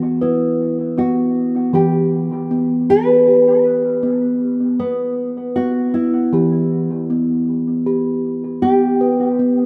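A steel tongue drum struck with firm rubber mallets rings out round, pure and bright in arpeggios beside a woody, thumb-plucked nylon-string guitar carrying a dark melody on old strings, both up front with analog delay and bathed in a long wet plate reverb, giving this short cut from a longer world meditative piece in 3/4 a hypnotic, gentle calm.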